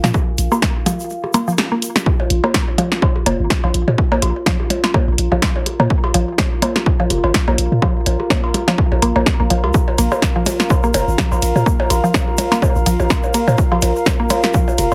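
Cool and sparse, this minimal techno excerpt runs at 125 BPM in 4/4 with a 56% swing on the sixteenths, opening on a Bb5 chord before a band accent at 1.6 seconds leads into the drop at 2.1 seconds. A punchy electronic kick and a tape-warm analog drum machine of hi-hat, ride and snare sit up front beside a deep sine sub bass with a pitch-drop attack, while a woody, round FM pluck riff with chorus, delay and sidechain pumping sits beneath a warbling, nostalgic lo-fi pad that breathes with the same pumping. Delayed percussion blips and cowbell add texture throughout, a grainy, bright tube shaker sits in the background during the opening and again from 9.7 seconds, and the whole mix carries a heavily compressed radio sound with light reverb.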